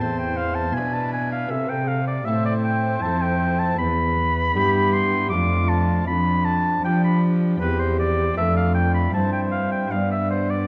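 An up-front oboe with a smooth top and vibrato sings a second line above a distant, pure wooden flute carrying the melody, in this radiant, serene baroque-style sonata movement in triple time, cut from a longer piece. Beneath them, a rich, reedy gut-string cello, bowed by a single player and placed up close, anchors the bass while a chamber organ's nasal cornet solo stop, with a touch of chiff, fills in the accompaniment. The production is dark and warm, set in a wet recital hall reverb, and the harmony moves from minor toward its relative major partway through, at 3.8 s.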